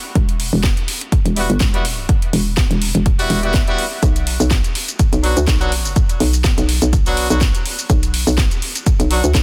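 A swung 124 BPM groove in 4/4 drives this swaggering, gritty bass house cut in E minor, built on a punchy, tape-toned electronic kick and a layered house kit of cracking snare, metallic hi-hats and shaker. Up front, a hollow, knocking FM bass bounces between E1 and D2 with a fast attack, tube saturation and sidechain pumping, while from 1.4 seconds a bright horn section fires smooth-topped stabs with light vibrato through a low-pass filter, dub echo and pumping of its own. The chords move from Emadd9 to Bm in a dry, dense, heavily limited modern mix, cut from a longer piece.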